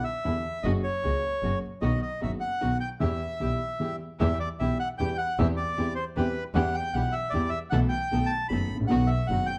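A dark, lightly reverberant production frames this dramatic, tense tango in a rubato three-four, where a reedy, up-front bandoneon with plate reverb carries the melody over a worn, woody upright piano with audible action noise and an intimate bowed double bass played sul tasto, while a veiled, con sordino string section adds soft-edged stabs in the background, and a brief break arrives at 3.8 seconds.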